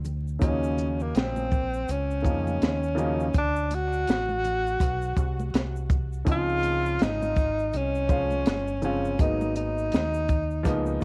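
A swung 82 BPM jazz-hop groove in 4/4 opens with a round, dark fingered electric bass and bright, dry congas and egg shaker tucked in the background, joined at 0.1 seconds by a compact cocktail drum kit with a high-tuned snare and tight kick, tape-saturated and up front. At 0.4 seconds a breathy tenor saxophone takes a mellow, subtoned solo with vibrato and scooped notes, its line treated with tape echo, while a woody upright piano comps through Ebm7, D6, Dbmaj9 and Abm9. The smooth, warm cut has a homemade cassette character, with light reverb and vinyl crackle.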